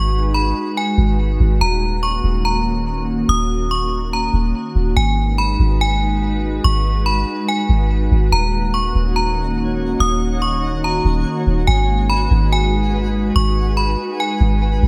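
A metallic, inharmonic FM bell carries the melody in this melancholic, hazy hip hop fragment, its bright, ringing tone given a chorus sheen and tape echo. Beneath it, a glassy FM pad holds sustained chords with a slow attack and long release, its ethereal, warbling vintage character thickened by ensemble chorus and its own reverb. A soft 808-style bass sits up front with a deep, round sine tone and a fast, decaying attack, anchoring the half-time feel. At 9.1 seconds a twinkling granular texture slips in, sitting in the background and adding a sparkling octave-up shimmer. The harmony moves between Abm7 and Ebm7, and a light reverb gives the whole piece a gentle sense of space in this excerpt from a longer track.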